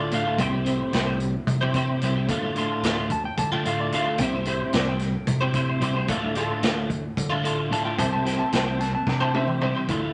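A muffled-topped, moderately reverberant studio sound frames this hypnotic, dark psychedelic rock excerpt in 7/8, where a compressed, up-front twelve-string electric guitar riff churns through a rotary speaker, a shadowy clean lap steel carries the slide melody played with fingerpicks, a round, punchy dub bass grounds the alternating C and Dm chords, a tense, detuned sawtooth drone and soft-handed, high-tuned congas sit very quiet beneath, and a vintage kit with a punchy kick and medium-tuned snare plays a fill from 9.1 s to 9.9 s.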